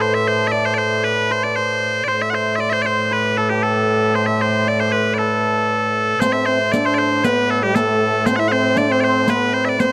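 A driving, mysterious medieval dance excerpt opens with loud, piercing bagpipes leading the melody over a shimmering hammered dulcimer second line and a clear, reedy viola da gamba drone in a dry, close booth, until at 6.2 seconds a distant, roomy trombone takes up a second line and a riq adds dark jingles.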